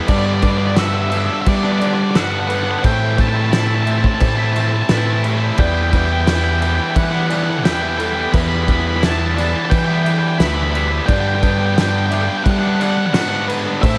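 Brooding and cinematic, this 87 BPM post-rock passage, cut from a longer piece, moves through Gmaj7, Am7 and Em7 as a dark, fuzzed octave lead guitar with tape echo sings high over an up-front, growling overdriven fingered bass and a loose acoustic drum kit with punchy kick, fat snare and dark cymbals in a pumping room, while crunchy overdriven and tight distorted guitar riffs sit in the background alongside very quiet twangy clean guitar arpeggios and a muted felt upright piano whose echoed arpeggios carry audible action noise.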